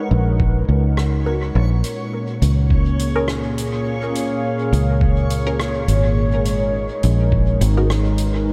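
Meditative and spacious, this ambient dub excerpt at 104 BPM with a swung sixteenth feel sets a warbling, nostalgic pad of detuned sustained chords up front over a punchy, foam-muted fingered electric bass, a muffled, thumpy pitched-down kick, a soft-mallet kit of hi-hat and rim click trailing dub echo, a nasal filtered chord stab with phaser in the background, and a reversed, granular swelling texture, all moving from G#m9 to A#m7 and back at 6.2 seconds in a dreamy mix soaked in huge reverb.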